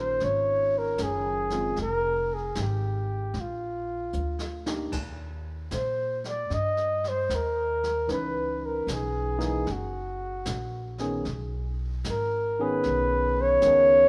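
A slow swing at 76 BPM in 4/4 gives this melancholic, intimate jazz ballad an unhurried, lilting pulse, cut from a longer piece. Up front, a mellow flugelhorn carries the solo melody with a soft attack and a present, jazz-style tone. Beneath it, a bright, barky tine electric piano, clean through a combo amp, supplies the chords, moving from Db69 through Fm and Bb6 to Eb before shifting to Dbm9, Gb69 and B69. An upright bass, played pizzicato with steel strings, adds a woody, thumpy low end. A brush drum kit enters at 0.2 seconds, set in a small room with dark cymbals, a medium-tuned snare and a boomy kick, and it plays a brief fill between 4.1 and 4.9 seconds. The whole has light reverb and studio ambience, with the rough feel of a home demo mix.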